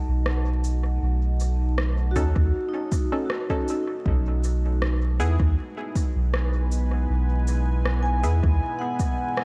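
A deep, moody ambient pad fades in from the very start, its detuned sawtooth chords softened by chorus and its own reverb, while a metallic, ringing vibraphone traces arpeggios through dub echo over it. This spacious, peaceful ambient dub fragment moves at 79 BPM in a straight 4/4, resting on a B7 chord before shifting to E over B at 4.1 seconds. A round, soft sub bass sits up front almost from the outset, joined by an electronic rim click and shaker that carry dub echo and the sense of a large room. At 2.2 seconds an overdriven, layered kick drum arrives up front, together with a muted, filtered chord stab whose decaying, detuned tone is coloured by chorus and echo. The whole passage is set in light reverb with a bed of vinyl crackle, and it is cut from a longer piece.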